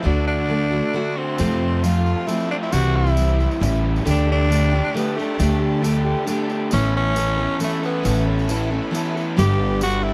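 A straight triple-metre lilt carries this hopeful, open-road folk rock and heartland rock excerpt, where a raspy, gritty tenor saxophone leads up front over a full-bodied picked acoustic guitar, an overdriven, lo-fi, double-tracked garage guitar riff and a woody pizzicato upright bass, with a very quiet, lush bowed string section and a jingly tambourine joining at 1.4 seconds, set in a dry, close 1970s-style studio sound.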